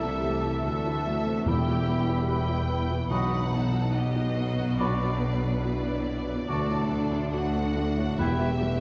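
Sorrowful and bittersweet, this cinematic film-score excerpt in E minor drifts at a rubato 71 BPM in 4/4, with veiled con sordino violins carrying the melody over a second, quieter muted violin line, a pure-toned distant flute section, a solo oboe and a roomy clarinet. A soft felt-muted upright piano with audible action noise, very quiet muted violas, a mellow French horn section holding chords and ringing fingerpicked harp arpeggios fill the accompaniment, while dark muted cellos and lush muted double basses anchor the bass and hushed timpani enter at 1.5 s, all set in a dark production with moderate scoring-stage reverb and a faint mains hum.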